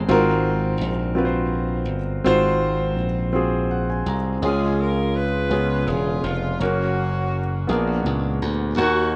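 A clear grand piano, intimate and up front with audible action noise and long sustain, accompanies this slow, reverent yet jubilant gospel passage in 6/8 at 55 BPM, moving from Ab13 through Db, Db7 and Gb to Bb7b9 and adding a fill from 3.3 to 4.4 seconds. Underneath, a glassy electric slap bass sits punchy and direct throughout. At 4.4 seconds a tight jazz-style saxophone section enters with the melody, distant and roomy with light vibrato and tape echo, all within a rough home-demo sound, lightly reverberant and dulled at the top, cut from a longer piece.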